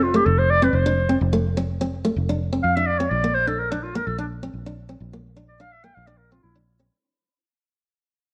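Warm and danceable, this short highlife guitar band excerpt at 126 BPM in straight 4/4 fades out under a jazz-style clarinet solo, mellow and vintage with subtone and vibrato, that ends at 6.6 seconds, while a full-bodied, fingerpicked nylon-string guitar with audible finger squeak and a dark, round, foam-muted electric bass sit up front over an F to Bb change, all bathed in a moderate echo chamber reverb.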